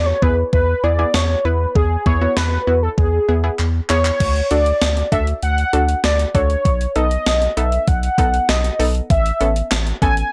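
A dry, gritty hardware sound frames this nocturnal, melancholic synth-pop passage, cut from a longer piece, as a velvety, chorused synth lead with vibrato carries the melody over a lush, detuned unison pluck and a round, deep analog bass given tube saturation. A gated 80s digital drum machine with a thumpy kick, gated reverb snare, handclaps, hi-hat and crash cymbal sits up front, tape-warm and re-recorded in a small room. A drum fill at 3.6 seconds leads into a new section at 4.2 seconds, while the harmony moves from E through D and B7 to Aadd9.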